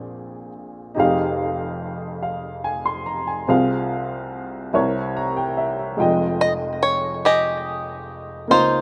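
Fervent and soulful, this short gospel fragment in a straight 6/8 rests on a woody, slightly detuned upright piano that carries the accompaniment throughout, moving from Bb13 through Fm9 and C7b9 and adding a fill from 4.7 to 6.0 seconds. A bright, twangy bluegrass banjo, played with fingerpicks, takes the melody, sounding briefly at the start and returning at 6.4 seconds. Both instruments sit up front in a rough home demo mix, bathed in a moderate plate reverb.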